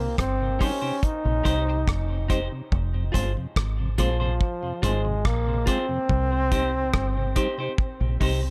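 A clear trombone with vibrato carries the melody up front through tape echo in this meditative, laid-back roots reggae excerpt, over a round, punchy dub bass, a dry 70s drum kit of hi-hat, tight kick and rim click, a flute-like tonewheel organ turning on slow rotary speaker in the background, a clean hollow-body electric guitar with tape echo, and a very quiet, nasal filtered dub chord stab heard only from 0.6 to 2.5 seconds, all in a small room with light reverb.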